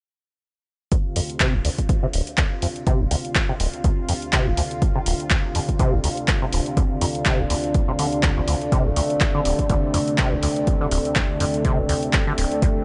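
Acid house at 123 BPM with a swung 16th-note feel in D minor pentatonic, this driving, trippy passage from a longer piece settles on a Dm7 chord as the bass, drums and unison pad enter together at 0.9 seconds. A squelchy, resonant acid bass riff with overdrive, chorus and dub echo rides a filter sweep throughout, over an up-front, tape-warm electronic kick and a punchy analog drum machine with handclaps and hi-hat, while a lush, detuned unison pad sustains chords with pumping sidechain. From 2.2 seconds a warbling, nostalgic, lo-fi pad adds a dark, chorused texture with its own reverb, all set in a light room.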